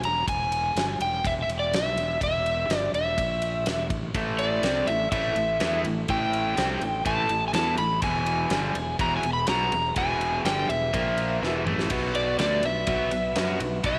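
Driving and swaggering, this excerpt of blues rock with a southern rock streak moves at 124 BPM in E mixolydian, as an overdriven slide guitar sings the up-front melody over a growly, punchy fuzz bass and a big-room rock kit with a fat snare, thumping kick and rolled-off top. At 4.1 seconds a double-tracked, picked overdriven electric guitar riff joins in, while a very quiet tonewheel organ holds round, dark chords through a rotary speaker, its key click just audible. A drum fill at 11.4 seconds pushes toward a closing turn of chords, and a moderate plate reverb gives the mix a roomy glow.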